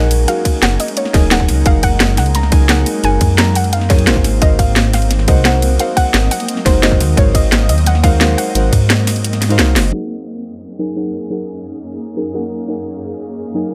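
Liquid drum and bass in an uplifting, lush mood, cut from a longer piece. It opens on a drop in which a soft, round pluck melody with chorus and digital delay rides over deep, mellow chord stabs, a shimmering, ethereal pad with reverb and sidechain pumping, and a dark, detuned saw bass that rumbles up front with tube saturation. An overdriven drum kit with a cracking snare and filtered bright hats and ride drives the groove, joined by a tight electronic kick from 0.5 seconds, before a drum fill at 9.8 seconds hands over to a filter sweep where only the stabs and pad carry the Gb69 chord to the end.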